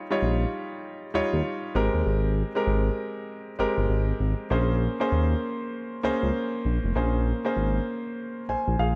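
R&B in the new jack swing style, this short cut from a longer piece feels punchy and slick, riding a 4/4 groove with a 62% swing on the sixteenths. A clear concert grand piano carries the accompaniment from the very start, sounding natural and up front with deep bass in its tone. A smooth synth bass enters at 0.2 seconds, blending sawtooth and square wave colors into a mellow, sustained line with a fast attack and a touch of vibrato, sitting up front beneath the piano. The harmony moves from Eb9 to Abmaj9 at 1.7 seconds and settles on Bbm9 at 4.5 seconds. Light reverb and a studio ambience frame the two parts.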